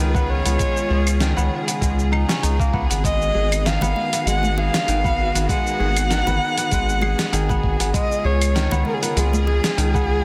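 A dark, woody kamancheh melody with vibrato and delay opens this hypnotic, mystical organic downtempo excerpt at 98 BPM in G# dorian, set over bright, fingerpicked kora arpeggios with delay, lush, distant bowed string chords and a round, deep analog bass, the strings and bass both pumping with sidechain, joined by a gritty, thumpy electronic kick and a dusty soul sampler-style kit with fat snare, hi-hat, cabasa and claves, while ringing, close congas sit in the background from 3.8 s to 9.6 s, heard in a small room with light reverb and a dense, heavily limited modern master.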